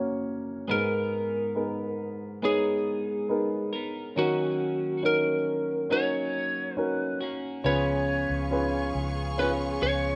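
Tender and emotional, this pop ballad fragment moves in a straight 4/4 at an unhurried pace, cut from a longer piece. A dark, mellow baby grand piano sits up front from the start, its short sustain carrying the accompaniment, and at 0.7 seconds a lightly driven lead guitar enters with the melody, its slightly broken-up, compressed tone close alongside the piano. Beneath them a bright, twangy twelve-string electric guitar picks clean arpeggios, bathed in spring reverb. Near the end, at 7.6 seconds, a vintage foam-muted fingered electric bass adds a round, amped low note, and a lush, woody studio string section joins with bowed, vibrato-rich sustained chords. The harmony passes through G#madd9, D#m7 and C#7, and the whole has the rough feel of a home demo in a small room.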